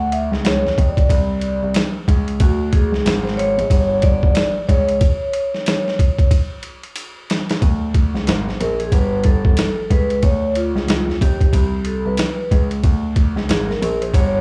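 A dry, gritty hardware sound with transformer saturation and the feel of a small room frames this smooth, relaxed jazz-hop cut, taken from a longer piece and set to a swung 16th-note groove in 4/4. A dark, mellow concert grand piano carries the bass line in its lowest register, sitting up front with deep low end and a touch of tube saturation. Over it, a metallic, ringing vibraphone played with medium mallets takes the lead as a solo throughout, its slow motor vibrato shimmering above harmonies built from sus2, add9 and maj7 colours. The boom bap sampler-style kit is compressed and pitched down, with a thumpy kick, a medium-tuned snare, hi-hat and ride, re-recorded in a large room and placed up front as the loudest part. A break arrives at 5.0 seconds, a drum fill comes in at 7.0 seconds, and the opening section repeats from 7.6 seconds.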